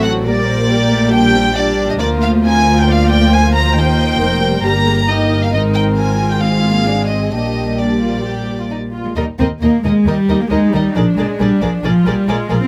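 A violin section carries the melody high in its range, bowed sul tasto with vibrato and a soft attack for an intimate, rounded line. This cheerful, spirited classical-period movement for string orchestra moves at a quick, straight pulse in four, and all five string parts play together from the opening of this short cut from a longer piece. A second violin section traces a smooth-topped inner line with light vibrato, while the violas fill in the accompaniment with their own vibrato and gentle bowing. Beneath them, a dark cello section and a double bass section with light vibrato anchor the bass, the cellos sitting slightly forward in the blend. The harmony passes from Gm/Bb through Eb and Fm7/Ab to Bb, then a fresh passage begins at 9.2 s on Eb and arrives on Bb7 at 11.0 s. Close, detailed microphones and a light reverb give the ensemble a near, chamber-scale presence.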